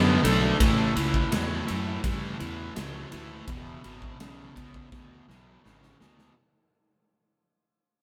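A straight 4/4 groove at 83 BPM drives this swaggering blues rock power trio excerpt with a southern rock edge, tuned slightly sharp to A4 = 441 Hz and moving from D to A to E7 as it fades out. An up-front, double-tracked overdriven electric guitar picks a low riff over a growly, fuzz-soaked fingered bass, while a huge arena drum kit, entering at 0.2 seconds with a punchy kick, medium-tuned snare and bright ride cymbal, plays a fill from 4.9 seconds. The band plays live together in a stone room with a moderate reverb that gives the drums a pumping, hall-like size.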